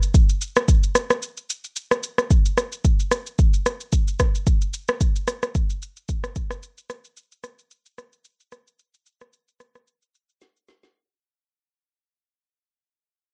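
An afro-pop drum kit opens this late-night, soulful amapiano excerpt at 111 BPM, its deep kick, woody snare, rim click and shaker sitting up front with a gentle 16th-note swing. The electronic, produced kit drops into a brief break from 1.2 to 2.3 seconds and closes with a drum fill from 10.4 seconds, all while the passage fades out. The sound is dry and gritty, with little reverb.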